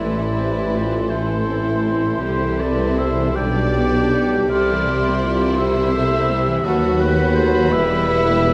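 A tender, lyrical classical passage in A minor opens with the full ensemble sounding together from the start, moving at a rubato 6/8 lilt of about 52-57 BPM in dotted quarters. An intimate chamber violin section carries the melody in a low register with light vibrato and soft, sul tasto bowing, while a darker, lush symphonic violin section, a hollow concert flute, a quiet clarinet and a roomy oboe weave second lines around it. Beneath them, a very quiet bassoon and a close viola section supply accompaniment, and a close-miked French horn section holds mellow sustained chords in the background. The bass is built from a pure, floating double bass section, a woody cello section and a distant tuba. The harmony moves from Am through C, G/B and C before turning to B7/D# and settling on Em at 7.7 seconds. A generous scoring-stage reverb surrounds the ensemble, and the passage is cut from a longer piece, ending at 8.5 seconds.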